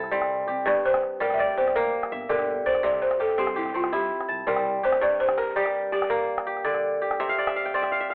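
In this reflective, hypnotic fragment of West African string and xylophone music in 12/8, a crisp, ringing kora plays fingerpicked arpeggios up front from the start, beside a buzzing, woody balafon melody played with soft rubber mallets and touched by slapback echo. A dark pizzicato upright bass sits low beneath them until 5.0 s, and a deep calabash plays in the background. After the balafon stops at 7.0 s, the kora finishes with a fill from 7.2 s. The recording has a worn, warbly cassette character with a telephone tone and a moderate spring reverb.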